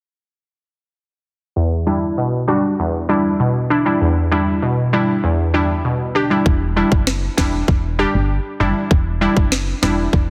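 Dancehall at 98 BPM in E minor, sultry and hypnotic, opens at 1.6 seconds on an Em7 with a glassy, detuned wavetable pluck carrying a chorus and a low-pass filter sweep, then at 6.5 seconds a woody, round FM bass and an overdriven island pop drum kit with a tight kick and sharp snare join, all under light digital reverb and a heavily compressed radio sound in this short cut from a longer piece.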